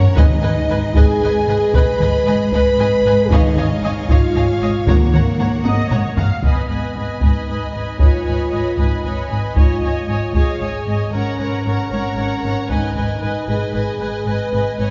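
Dark and heroic, this epic orchestral film-score excerpt in 6/8 sets a background violin melody and a second violin line over mellow French horn chords, lush viola accompaniment, a rich string section holding chords until 6.5 seconds, and cellos and a woody double bass on the bass, while a hard-stick taiko ensemble plays the drums with fills at 0.0 and 5.7 seconds, very quiet timpani sound in two passages, and a wet concert hall heard from further back softens the top end.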